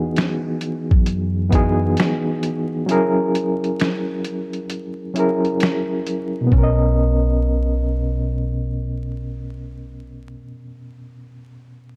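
Mellow and cosy, this lo-fi hip hop fragment from a longer piece swings gently over a gritty, reedy overdriven electric piano accompaniment pushed through a combo amp with fast tremolo, moving from Emaj7 to F#7 and settling on Bmaj7. A compressed, muffled sampler-style kit with a thumpy kick, fat snare, hi-hat and finger snaps sits up front with tape-warm colour; its kick drops out at 2.9 s and returns at 6.5 s, and the whole kit stops at 6.8 s. A woody pizzicato upright bass on steel strings holds the low end, all wrapped in light small-room reverb and a bed of vinyl crackle.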